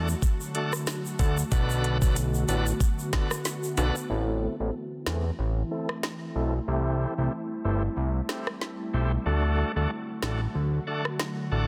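A fat, detuned analog bass sits up front in this tough, hypnotic dancehall excerpt, alongside an electronic island pop kit with a knocking kick, woody snare and metallic hats, while a shouting tonewheel organ with overdrive and fast rotary speaker and an ethereal, airy pad with ensemble chorus both pump with the sidechain, soft-handed egg shaker and timbales add acoustic colour until 4.1 seconds, and a filter sweep runs from there to the end.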